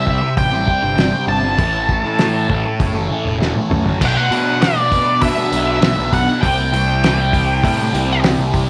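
A dark, up-front octave-fuzz lead guitar carries the melody from the opening, its distorted tone thrown back by a slapback echo, in this kaleidoscopic, trippy psychedelic rock excerpt at 99 BPM in a straight 4/4. Beneath it, a thick, double-tracked fuzz guitar drives a riff through a phaser, while a picked electric bass adds overdriven fuzz of its own. A cloth-damped drum kit sits up front with a thuddy, muffled, lo-fi character, a fat snare, tight kick and rolled-off top, and a fill from 3.4 to 4.0 s leads into the second section. A full tonewheel organ holds sustained chords in the background, lightly overdriven with vibrato and a lush chorus, moving through C, A and Bm. From 4.2 s, very quiet, bright, high-tuned congas played with soft hands join in, and the whole mix carries light reverb, small-room ambience and a faint mains hum.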